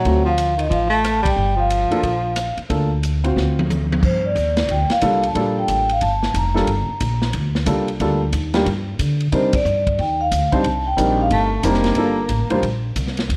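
Smoky and swinging, this short excerpt of small-group swing and bop in G minor moves at 181 BPM with a ringing, dark vibraphone melody over a woody pizzicato upright bass, an intimate baby grand piano with audible action noise, an airy, polished drum kit with a punchy kick and a clear baritone saxophone with subtone and vibrato that plays a second line until 2.5 seconds and returns at 11.3 seconds, all colored by light reverb and the warbling pitch drift of worn cassette tape, with band accents at 1.2 and 9.5 seconds.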